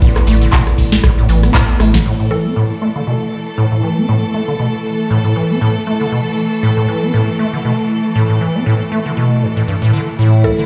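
A booming, raw sound fills a bare room on a big system in this driving acid house cut from a longer piece, set at 118 BPM in A minor with a swung 16th feel. It opens on a drop where a deep electronic kick, a crisp, metallic analog drum machine with handclaps, toms and crash, a very quiet gritty breakbeat kit, a grainy egg shaker and a round, dark, pumping analog bass all play together until about 2.0 s, with a band accent at 1.5 s and a drum fill at 1.8 s. From the very start and on through the cut, the squelchy, resonant square-wave acid bass riff runs up front with overdrive and digital delay over lush bowed string chords and a moody, detuned ambient pad in the background, while a woody, mallet-like synth pluck with dub echo surfaces briefly at 2.3 s and again at 10.4 s.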